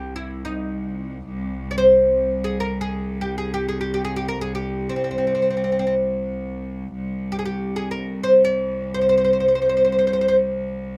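Close, detailed microphones and a light reverb give this short section of a longer Arabic maqam ensemble piece an intimate, present sound. In free time and set in C maqam saba, the music feels passionate and festive. An acoustic oud carries the melody up front, its plectrum-plucked double strings sounding woody and deep as it ranges from C4 to D5-50c. Beneath it, a bright studio cello section holds a bowed drone on C2 with light vibrato and an earthy ensemble tone, sitting well back in the balance. The opening idea returns at 6.9 s, and the oud stops at 10.4 s, leaving the cellos to sustain alone until 11.0 s.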